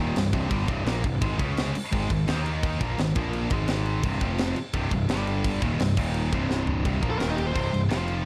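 A straight 4/4 pulse at 170 BPM drives this heavy, relentless heavy metal excerpt in C phrygian, cut from a longer piece. A bright, high-gain, double-tracked distorted guitar sits up front with a picked riff from C2 to Eb4, moving through power chords such as Ab5, Db5 and Bb5, while a growly fuzz bass, overdriven and direct and amped, holds down the low end from the very start. A tight acoustic drum kit enters at 0.2 seconds with a high-tuned snare, tight kick, crash cymbal and toms, its saturated, gritty sound and rolled-off top set close in a studio room, and a drum fill at 6.5 seconds leads into a new section. There a dark, bluesy lead guitar, distorted and picked with digital delay, slips in at 7.1 seconds for a brief solo phrase between Eb4 and C5. The whole is framed by a small room ambience and a dark production.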